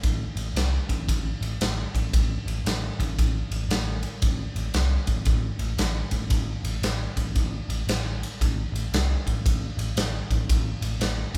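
Recorded live in one room with light reverb, this gritty, heavy fragment of blues rock and southern rock moves at 115 BPM in 4/4 with a swung eighth-note feel in A minor. A big acoustic rock kit sits up front in a bright stone room, with a punchy kick, a medium-tuned snare and a bright ride cymbal. An overdriven, amped electric bass played with a pick growls low in its register, holding the bottom throughout the full 11.4 seconds.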